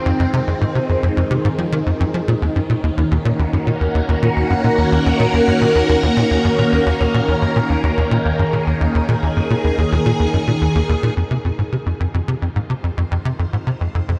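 A swirling, vintage string machine opens with slow-blooming sustained chords through ensemble chorus and phaser, moving from Fm7 to Ebm7 at 2.3 seconds in this cosmic, mysterious stretch of sequencer-driven space music at 108 BPM in F phrygian. A tight, punchy sawtooth-and-square sequencer bass drives a plucky riff with a moving notch and tape echo, sitting up front alongside the bright strings. A huge, wet reverb with a 7.3-second tail surrounds the music as the harmony returns to Fm7 at 11.2 seconds before the cut.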